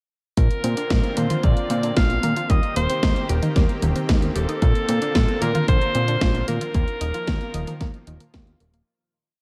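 A bright alto saxophone with light vibrato and tape echo carries a sunny, danceable italo disco melody over a lush, warbling unison pad, a round arpeggiated analog pluck, an octave-jumping fat analog bass with tube saturation, a punchy four-on-the-floor electronic kick drum and a house drum kit of hi-hat, cracking snare and toms in gated reverb, all in a roomy digital ambience before the piece fades out from 6.0 to 8.9 seconds.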